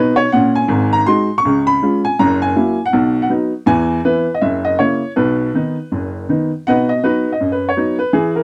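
A clear, woody upright piano carries this playful, exuberant stride jazz fragment alone, its boxy, short-sustained tone sitting up front across a range from F#1 to C#6. Swinging at 161 BPM in B major, it moves through a brisk progression from B through G#5, C#7 and F#7 to E and back home, with a fresh pass through the opening material starting at 6.7 seconds. The dry, close sound recalls a 1970s studio, giving the brief cut from a longer piece an intimate, bouncing presence.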